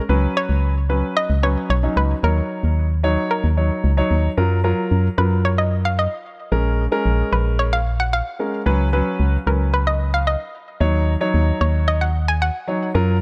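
A concert grand piano and a dark, organ-like FM bass open together at 0.1 s in this upbeat, carefree dance-pop passage, set at 112 BPM in a straight 4/4 in F# major. The piano has a warm, deep-bottomed accompanying tone. The percussive, fast-attack bass decays and sits up front, a little louder than the piano. At 0.4 s a hollow, nasal square-wave pluck takes the melody, bouncy and detuned with a sub-octave sine and a noise layer beneath its short, filtered decay, thickened by chorus. The harmony moves from C#7sus4 to D#m7, and from 4.4 s the music builds through the end over F#maj7, A#m7, C#7sus4 and D#m7, all in a studio reverb. It is a fragment cut from a longer piece.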